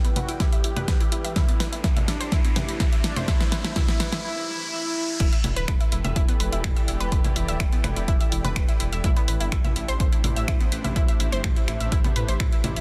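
A deep house kit of congas, crash, finger snaps, hi-hat and a fat, softly clipped snare opens this dark melodic techno excerpt at 125 BPM in E minor, alongside chorused analog pluck arpeggios with dub echo, a very quiet morphing wavetable pad and an airy, breathy pad beneath. A rumbling detuned saw bass and a smooth supersaw melody under a filter sweep soon join, followed by a punchy, up-front electronic kick and a background riser through the build-up, before the drop lands at 5.2 seconds.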